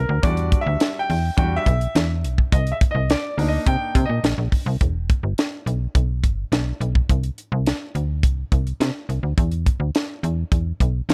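A clear, polished concert grand piano opens this slick, danceable early-eighties boogie funk excerpt alongside a snappy, up-front FM bass with a metallic, digital attack, and a tight, dry funk kit with a high-tuned snare and hi-hat joins at 0.2 seconds. The piano carries rich chords until it drops out at 4.3 seconds, leaving bass and drums to drive the straight 4/4 groove through sparer harmony. A small room and a dark production frame the cut.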